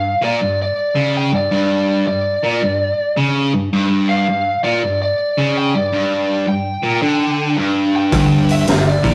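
A bright, double-tracked overdriven guitar riff sits up front in this swaggering, gritty blues rock and southern rock excerpt at 109 BPM with a swung 4/4 feel, alongside a dark, picked lead guitar through a small cranked amp, until a growling, overdriven fingered bass tucked in the background and a punchy, saturated garage drum kit with a high-tuned snare and rolled-off top arrive at 8.1 s, captured as a rough rehearsal-room recording with warm saturation and moderate stone-room reverb.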